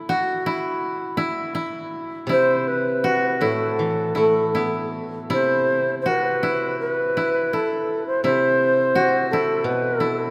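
Free-flowing rubato in 4/4 carries this meditative, austere fragment of Japanese traditional chamber music, where a woody, fingerpicked koto opens alone on a high second line before, at 2.3 seconds, an airy, reedy bamboo shakuhachi takes the melody up front with vibrato and a crisp, chiffy attack, while a mellow second koto lays down a low accompaniment, all suspended in a long, cathedral-like reverb.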